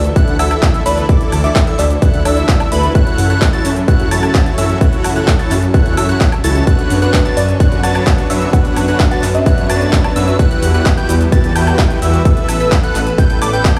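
A punchy, up-front electronic kick drives this euphoric, anthemic slice of festival progressive house at 129 BPM in D major, alongside a big-room dance kit of handclaps, metallic hi-hats, shaker and woodblock, while a huge, dense supersaw riff trailing dub echo and a thick, saturated detuned saw bass with chorus both pump against the beat. Above them, a catchy plucky unison lead spins high arpeggios with a cassette-tape tint and a moving notch filter, and a lush unison pad holds sustained chords in the background through a Dsus2, F#m7, Bmadd9/F#, Emadd9 and Asus2 progression. A dark, sparkling bell-like FM electric piano adds melody in two brief phrases, the second arriving at 7.0 seconds, all set in a stone-room reverb with a loud, festival-ready finish.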